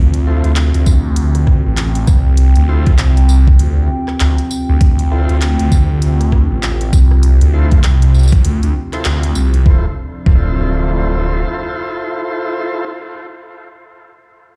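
A dark, moody analog pad and a swirling, thick detuned saw bass open this playful, gritty glitch hop excerpt on a Dm7 chord, the saturated bass sitting up front with phaser and overdrive while the pad's sustained chords pump under sidechain with chorus and phaser. A layered, overdriven pop kit of handclaps, hi-hat, rim click and tambourine starts almost at once, full, lightly overdriven tonewheel organ stabs arrive at 0.3 s through a slow rotary speaker, sidechain pumping and dub echo, and a knocking electronic kick lands up front at 0.9 s, both drum parts re-recorded in a small room. The drop runs through a band accent at 9.1 s, after which the drums and then the bass drop out, leaving pad and organ to carry a brief closing section.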